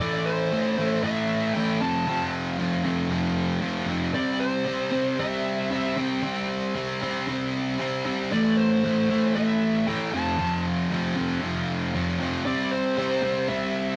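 A heavy, driving rock passage in A minor at 116 BPM opens with a dark, double-tracked overdriven electric guitar picking a low riff up front, while a smooth, overdriven lead guitar plays a picked melody above it in a higher register from the start. The chords move through Am, F and C across the 14 seconds. A short, wet booth ambience and a rough rehearsal-room sound give the cut a raw, close feel.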